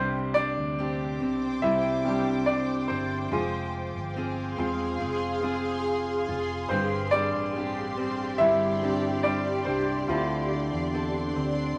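A clear concert grand piano leads this tender, emotional pop ballad excerpt, its polished, up-front tone carrying the solo role across the full 11.8 seconds with deep bass and a short sustain. Beneath it, a fingerpicked steel-string acoustic guitar plays arpeggios with fresh strings and audible finger squeak, while a mellow fretless electric bass adds a dark, round, punchy low end. At 0.9 seconds a shimmering ambient pad enters with sustained chords, its ethereal, detuned sound shaped by a slow attack, octave-up shimmer, chorus and its own reverb. The music moves at a slow 71 BPM in a straight 4/4 in C major, passing through Csus2, Fm, Gsus4 and Dm7. A moderate studio reverb and a layer of vinyl crackle give the recording a soft, nostalgic haze.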